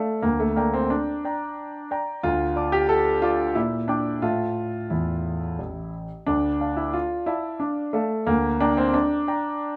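Classical-period piano sonatina in D minor at 90 BPM in 3/4, elegant and cheerful in mood despite the minor key, taken from a longer piece. A solo grand piano plays throughout the 9.8 seconds, its tone clear and present with long sustain, sitting up front in a light reverb and ranging from A1 to D6. The harmony moves through Gm/D, D5, Gm/Bb, A5 and Dm before settling back on Gm/D at 8.3 seconds.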